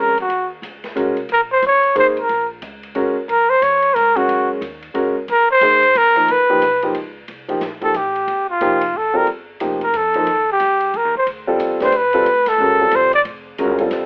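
Intense, hypnotic modal jazz in a swinging 3/4 at 180 BPM, cut from a longer piece, moves from Eb dorian to C dorian at 7.3 s, where the up-front, breathy trumpet with whispered, intimate vibrato takes its solo over a smooth, vintage grand piano with deep bass, a woody pizzicato upright bass in the background and a distant, roomy big-band drum kit with a boomy kick and rolled-off top, all heard through a telephone-like sound with light reverb.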